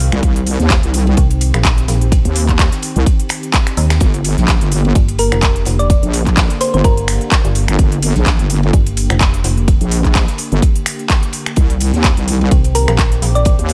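Swaggering and aggressive, this bass house excerpt in G minor drives at 127 BPM in 4/4 with a 16th-note swing, cut from a longer piece and moving from Cm to Gm and back to Cm at 11.6 seconds. Two basses dominate up front: a heavy, saturated wobble bass built from detuned square and sine tones with chorus, and a dark, metallic FM bass with fast-attack, decaying notes and tube saturation, both pumping against the sidechain. A punchy electronic kick sits up front in a small room, joined by a big-room dance kit of finger snaps, handclaps and crisp, tape-warm hi-hats, while a very quiet gated 80s kit adds ride cymbal and a medium-tuned snare from a bright stone room. Behind them, a sweeping resonant pad of detuned sawtooths holds sustained chords with a slow attack, warbling and evolving under subtle chorus and sidechain pumping. A round, tine-like synth pluck with a sub octave and a noise layer offers mellow, thumb-piano-like melody fragments between Bb4 and F5, most notably from 5.2 to 7.2 seconds. 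The mix carries a digital ambience.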